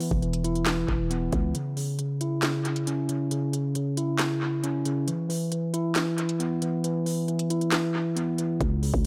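A mellow, clean tine electric piano sits up front playing arpeggios through a low-pass filter and dub echo, moving from E5 to C#m and back in this melancholic, eerie trap clip at 136 BPM with a half-time feel. An overdriven electronic drum kit of handclaps, crisp hats, a sharp snare and a knocking kick also carries dub echo, while a growling, buzzy 808-style bass appears only briefly at the start and returns at 8.6 seconds, just as the kick comes back after dropping out from 1.5 seconds. The whole cut from a longer piece is steeped in an echo-heavy digital ambience.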